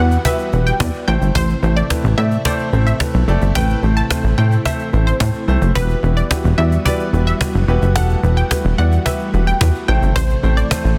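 A snappy, hard-handed cajon drives this energetic dance-pop excerpt in a straight four, sounding close and dry with a crisp snare rattle. Underneath, a punchy, funky analog bass sits up front, its sawtooth-edged, wave-folded tone snapping in with a fast filter pluck and decaying quickly. A warm concert grand piano supplies accompaniment with a deep low register, while a mellow, vintage organ-like string pad holds soft, sustained chords in the background, thickened by ensemble chorus. Over the top, a lush, detuned unison pluck carries the melody with a noisy bite and a delay trailing its notes. A barely audible electronic downlifter slips past in the opening seconds, ending by 1.4 s, as the harmony rocks between Emadd9 and Am under a dense, heavily limited modern master with light reverb.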